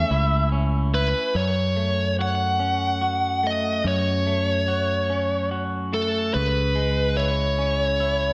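Set in a slow, straight 6/8 at 48 beats per minute counted in dotted quarters, this post-rock fragment, cut from a longer piece, feels hopeful and soaring. A dark, distorted lead guitar with a bluesy edge sits up front carrying the melody, its overdriven tone treated with slapback echo. Beneath it, an electric guitar played through a small old amp spins out picked arpeggios. Its slightly broken-up, compressed sound is coloured by spring reverb and slapback echo, and it sits lower in the mix than the other parts. A picked electric bass, direct and amped and also up front, anchors the low end with a warm presence. Opening on A/C#, the harmony moves to F#m at 1.4 seconds and then to C#m at 6.3 seconds. A moderate stage-like reverb gives the whole a big arena sound.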